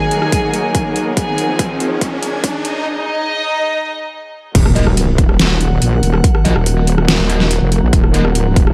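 Heavy wobble dubstep in Eb minor at 142 BPM with a half-time feel, this aggressive excerpt opens with a build-up in which a dark, reedy violin section carries the melody with delay over lush, bowed strings, an airy, breathy pad and a background riser. Overdriven electronic drums with a deep snare, metallic hats, rim clicks and crashes join the build-up alongside a punchy, up-front kick. The violins stop as the drop lands at 4.5 s, where a saturated, detuned wobble bass takes over the low end with chorus and overdrive, an impact hits, and fuzzy, double-tracked guitar stabs sit in the background from 4.8 s, while the strings and pad pump with the sidechain under light reverb.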